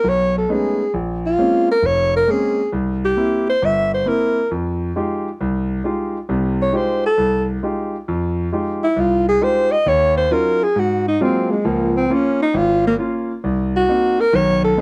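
An alto saxophone carries the melody up front, its warm tone touched with vibrato as it sings a jazz-style solo line spanning Ab3 to E5 across the whole 14.8 seconds. Beneath it, a clear concert grand piano supplies accompaniment, natural in tone and reaching down to a deep bass as low as F1. The tune is a late-night, swinging jazz piece in F minor at 134 BPM in 4/4, with a 68% swing on the eighth notes and tuning set slightly low at A4 = 437 Hz. Rich chords such as Bbm9, Fm9, Ab13 and Db6 pass through the harmony, with a Cm7b5 arriving at 13.4 seconds. Light reverb and a dark, warm production give this fragment of a longer piece a late-night atmosphere.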